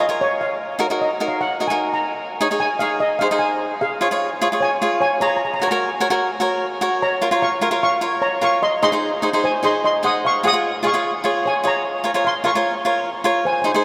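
A straight 4/4 calypso pulse at 150 BPM in Db major drives this carefree, festive excerpt of a longer piece, where a shimmering, airy lead steel pan played with medium rubber sticks carries the melody up front, taking a solo through the first 3.8 seconds, over the crisp, bright picked accompaniment of an acoustic cavaquinho as the harmony moves from Bbm and Ebm into Db and Gb, all bathed in a huge, wet reverb that sets the pair in a vast, echoing space.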